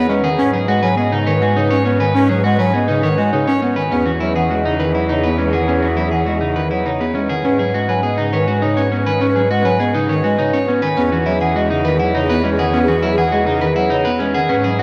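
A marimba struck with medium hard mallets carries the melody, its vintage, band-limited tone entering at 0.1 seconds and ringing in a vast, echoing space soaked in huge ambient reverb. This is minimalist classical pattern music in 3/4 at 102 BPM with a straight feel, tuned to A4 = 438 Hz, and its mood is urgent yet hypnotic. A bright, picked electric guitar sits up front with clean arpeggios, while a dark, close-miked bass clarinet supplies accompaniment in a classical style. Beneath them a single bowed cello holds the bass line with a focused, clear tone and vibrato, and a pure, mellow alto flute with a crisp attack and vibrato traces a second line in the background. The harmony alternates between G#m7 and Emaj9 in this short section, which is cut from a longer piece and ends at 14.8 seconds.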